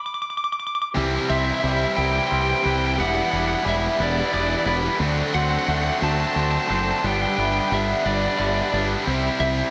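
In a slow 6/8 at 59 BPM, this hopeful, soaring post-rock fragment opens with a lightly driven, slightly broken-up lead guitar singing its tape-echoed melody alone before, at 0.9 seconds, a lush bowed string section, a twangy clean guitar's spring-reverbed arpeggios and two bright overdriven guitar riffs join, with a growling fingered bass up front from 1.0 seconds, over Cmaj7, Em7, D7 and G6 chords in a moderate scoring-stage reverb.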